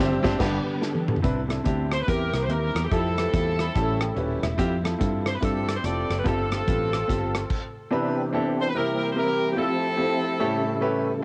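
A swung 4/4 at 144 BPM drives this jubilant, uplifting uptempo gospel passage in C major, cut from a longer piece. It opens on a band accent with a brief tonewheel organ solo, clean and warm through a slow rotary speaker with chorus vibrato, and a drum fill leads into the main groove at 1.2 s. The drum kit sits dark and smooth with a tight kick and rolled-off top, while the fingered electric bass is punchy and foam-muted, both up front, and a very quiet, lush bowed string section adds expressive portamento beneath. The clear grand piano accompanies throughout with an intimate tone and audible action noise, taking a fill around 3.3 s, as a tight, present saxophone section carries the melody alongside a forceful jazz-style alto sitting in the background with tape echo. After a stop at 7.5 s, the organ returns over the piano and saxophone section through chords moving from Cmaj9 through C7 and Fmaj9 to A7. 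The whole has the soft grain of a home cassette recording in a small booth.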